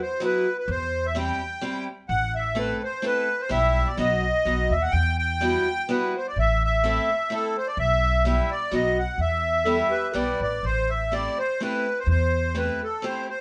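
A rubato 3/4 musette waltz at 127 BPM in E minor, this nostalgic, whirling fragment of a longer piece puts a sweet, reedy accordion with light tremolo tuning up front on the melody. A boxy, picked acoustic archtop guitar supplies the accompaniment with audible finger squeak, while a woody, thumpy pizzicato upright bass on gut strings anchors the low end from 0.7 seconds. A distant, roomy dark clarinet adds a brief classical-style second line from 9.7 to 10.6 seconds, and the band plays live in one room with moderate studio reverb.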